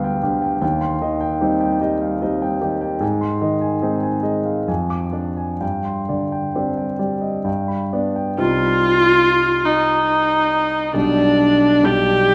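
A single bowed viola carries the melody, entering at 8.4 seconds with a rich, smooth and even tone coloured by vibrato, set up front in the mix and moving within a narrow middle range. This is a solemn, yearning romantic classical piece for viola and grand piano in C minor, cut from a longer work and flowing in a rubato 3/4 at roughly 61 to 78 BPM. The concert grand opens alone at 0.0 seconds as accompaniment, its warm, intimate and polished sound reaching down into a deep bass, with long sustain and audible action noise that keep it present and close. Under the piano's opening, the harmony leans on dominant and diminished colours, passing through Ab, Ddim/F and a Gsus4 that settles onto G before the viola arrives over Cm. Both instruments play on until the excerpt ends at 12.3 seconds, the piano closing on G/B. A wet concert hall reverb with a long tail surrounds the duo.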